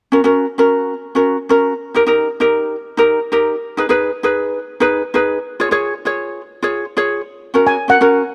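A mellow, shimmering lead steel pan played with soft rubber sticks arrives up front at 7.7 s over a light, fingerpicked acoustic ukulele that has picked out a sunny, carefree calypso groove from the start, both parts bathed in a moderate plate reverb as the cut from a longer piece moves from F# through D# and G#m to C# before returning home.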